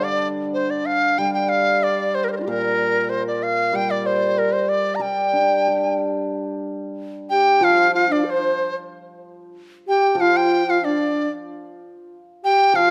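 A reedy large dizi with a buzzing membrane, soft attack and vibrato sings a tender, graceful melody up front over a shimmering, ringing hammered dulcimer in this rubato Chinese traditional chamber excerpt at 93 BPM in 2/4 and G yu mode, and a close-miked low xiao joins with an airy, straight-toned, tongued second line at 7.3 s, the ensemble heard in a moderate recital hall reverb.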